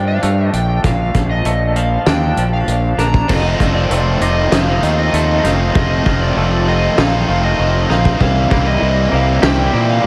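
A straight 4/4 pulse at 98 BPM drives this cinematic, cathartic post-rock build-up, cut from a longer piece, as a loose indie drum kit with a fat snare, tight kick and rolled-off top enters at 0.2 s beneath a growly, fuzz-drenched fingered bass sitting up front. An overdriven slide guitar carries the melody with slapback echo, while a bright, twangy electric guitar plays tremolo-tinged arpeggios in the background and a felt-muted upright piano adds very quiet, mellow arpeggios with audible action noise. At 3.3 s a picked, overdriven electric guitar riff joins up front with slapback echo, the chords moving from Bbmaj7 to F7 and then C7sus4, all set in a lush hall reverb that gives a big arena sound.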